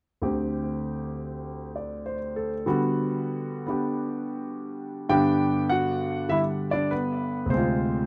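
Solo jazz piano in a swung 4/4, with a playful, warm mood, cut from a longer piece. A concert grand carries everything on its own from 0.2 seconds, ranging from deep bass notes up into the upper middle of the keyboard, and it sits intimate and up front with the soft clatter of its action audible beneath the notes. A touch of tape echo trails the piano, while light reverb keeps the close, dry sound of a 1970s-style studio intact. The harmony opens on a suspended dominant chord that settles onto a major seventh over its bass note, then moves in the second section to a plain major seventh before darkening into a half-diminished chord near the end. The tone stays natural and unvarnished throughout, giving the brief passage a playful warmth.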